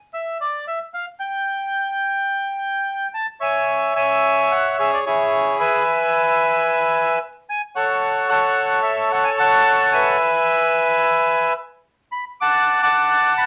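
Vinyl crackle and a moderate studio reverb frame this short, dramatic tango fragment, which moves with a rubato feel around 110 BPM in 4/4 and is tuned slightly sharp to A4 = 441 Hz. A single bandoneon plays alone from 0.1 s to 13.5 s, its reedy, dark tone placed up front as it ranges from E4 to D6. The tense harmony passes from an opening unaccompanied moment through C#dim into E69 at 3.7 s, settles on E, and turns to D near the close.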